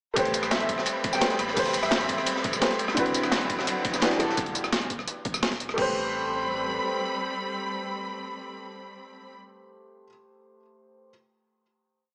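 Dreamy and melancholic, this short liquid drum and bass piece opens on a felt-muted upright piano playing soft, held chords with syncopated pushes through tape echo, joined by a lush bowed string section and a deep, mellow sub bass with octave in the background. An up-front, overdriven sampler-style kit with rolling two-step snare, rim, tambourine and crash drives the drop alongside a gritty, thumpy electronic kick and a dark, crunchy looped breakbeat sitting further back, while a glassy, detuned wavetable pluck adds short answering phrases with chorus and tape echo and faint high bongos flicker at 4.1 seconds. The drums fall away at 5.8 seconds for a final chord carried by strings and piano, with the sub bass lingering briefly, all set in a lush hall reverb with a small-speaker sound.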